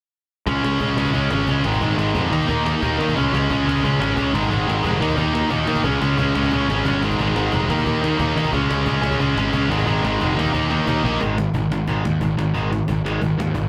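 Punk rock at 179 BPM in a straight 4/4, rowdy and rebellious, cut from a longer piece. Two bright, distorted electric guitars play picked riffs up front, the first one compressed, over a growly, fuzzy overdriven picked bass, while a woody cajon with faint snares sits distant in the background and plays a fill from 10.5 to 11.2 seconds. At 11.2 seconds the tight second guitar stops and a new section begins, all of it in a dense, heavily limited modern master with little reverb.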